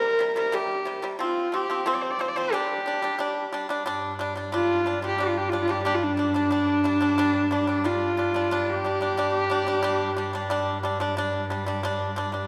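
A straight 4/4 pulse at 90 BPM carries this vast, windswept Mongolian folk excerpt, tuned to A4 = 438 Hz, where an up-front, husky horsehead fiddle sings the melody with light vibrato and portamento over bright, percussive pipa arpeggios played with fingerpicks, joined at 3.9 seconds by a distant, focused cello drone on G2, all set in a wet scoring-stage reverb.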